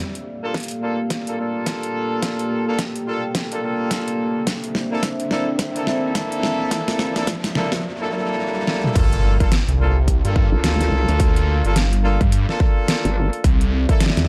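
A punchy, overdriven electronic kick drives this gritty, playful glitch hop excerpt in G dorian at 107 BPM with a 16th-note swing, joined by a metallic-hatted, deep-snared dubstep kit and clear horn stabs over a moody, pumping analog pad, a faint nostalgic warbling pad and a background riser that builds until the drop at 9.0 s, where a swirling, phased detuned saw bass and, from 10.5 s, a nasal vowel-sweep wobble bass join the mix amid Gm9 and C13 chords.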